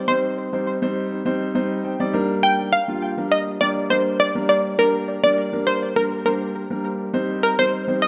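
Drenched in a wet plate reverb and heavy echo, this bittersweet, driving pop excerpt in C minor at 102 BPM puts a round, detuned sawtooth analog pluck with chorus, delay and a filter sweep up front on the melody, over a warm concert grand piano accompaniment with deep bass, long sustain and delay that plays a fill from 1.3 to 2.4 seconds as the chords move from Cm to Gm and return to Cm at 7.1 seconds.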